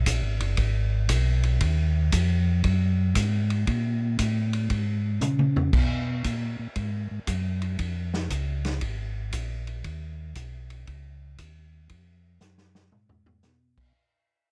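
A swung 4/4 groove sets the pace for this smoky, late-night soul jazz organ trio fragment, cut from a longer piece. A mellow tonewheel organ carries the bass line from the first moment, its round, dark, clean tone colored by chorus vibrato and a slow rotary speaker, and it sits up front in the mix. A vintage acoustic drum kit joins almost immediately, with dark cymbals, a medium-tuned snare, a punchy kick, and a rolled-off top end that gives it a natural studio-room feel. Drum fills appear briefly around 5.2 seconds and again near the close. The recording is dry and closely miked, capturing fine detail, while the whole passage gradually fades out from 2.4 seconds onward.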